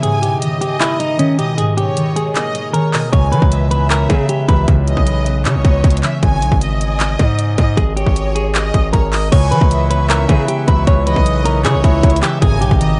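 This hard-hitting, melancholic trap piece opens in a half-time 4/4 feel at 155 BPM. A clean, compressed electric guitar carries the fingered melody through spring reverb, a low-pass filter and dub echo, while a ringing, fingerpicked concert harp provides the accompaniment and a lush, distant violin section adds a bowed second line with vibrato and portamento. An overdriven trap kit sits up front throughout, with a hard-clipped kick, bright hi-hats, handclaps and crash cymbal. At 3.1 seconds the opening break gives way to a heavy, saturated 808-style bass with a fast attack and a noisy, aggressive edge, as the harmony moves between G#madd9, C#m7 and G#m. The guitar briefly drops out and returns, and at 9.3 seconds a reedy accordion with slow beating enters in the background with sustained chords. The echo-heavy, dark-topped digital ambience gives the whole excerpt a hazy, spacious sheen.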